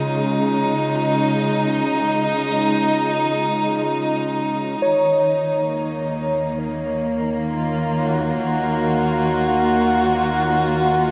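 A chamber string section, bowed close and up front with light vibrato and a hushed sul tasto tone, opens this reflective, melancholic ambient passage alone on a Db chord. At 4.8 seconds the harmony moves to Ebm7, and two more parts arrive together. Muted, felt-like synth keys play soft arpeggios high in the register, their dark, decaying notes blurred by chorus and tape echo and set in the background. Beneath them, a rich, smooth double bass section fades in slowly, its bowed low note even and touched with light vibrato. A huge, wet reverb with a long tail surrounds the whole ensemble, and the passage is cut from a longer piece.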